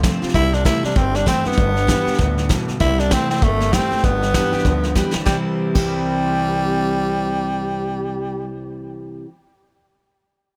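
A raspy, gritty tenor saxophone carries the melody up front in this rowdy, retro rockabilly fragment at 195 BPM with a swung feel in C major, backed by a full-bodied, picked steel-string acoustic guitar, a twangy, slightly broken-up electric guitar riff sitting in the background with spring reverb, a woody, thumpy upright bass, and a soft brush drum kit with dark cymbals that plays a fill at 5.0 seconds before dropping out at 5.8 seconds, set in a lightly reverberant room.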